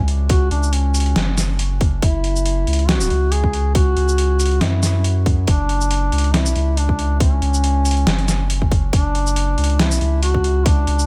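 Brooding and meditative, this deep dubstep excerpt moves with a half-time, lightly swung feel as a distant, roomy duduk plays a folk-style solo melody with scooped notes, trailed by dub echo. Beneath it, a thick, saturated sub bass with a fast attack and sustained tone sits up front, built on an F#5 chord throughout. A gritty, pitched-down, tape-warm sampler kit of hi-hat, shaker and medium-tuned snare enters at 0.1 seconds, joined at 0.3 seconds by a tight, layered electronic kick, all within a digital ambience.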